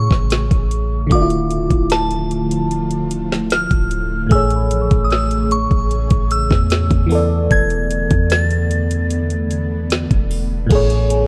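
A crystalline FM synth bell carries the melody high above this dreamy, smooth contemporary R&B excerpt, its bright tone softened by chorus and tape echo before it drops out at 10.3 seconds. Underneath, a chorused FM electric piano with a bell-like attack sits up front, while an ethereal, airy pad of detuned sawtooth and triangle layers holds sustained chords with a slow attack, long release, ensemble chorus and its own reverb. A deep, boomy 808-style bass anchors the low end, and an electronic drum kit with a knocking kick, woody snare, metallic hi-hats and crash cymbal keeps a straight groove in 4/4. From 4.3 seconds a delicate, slightly out-of-tune celesta with soft felt hammers adds a sweet, dark texture in the background, touched with tape echo. The harmony drifts from Amaj7 to Dmadd9 and back to Amaj7, then through E7sus4 home to Amaj7, and the whole mix carries light reverb and the worn, warbling pitch drift of old cassette tape.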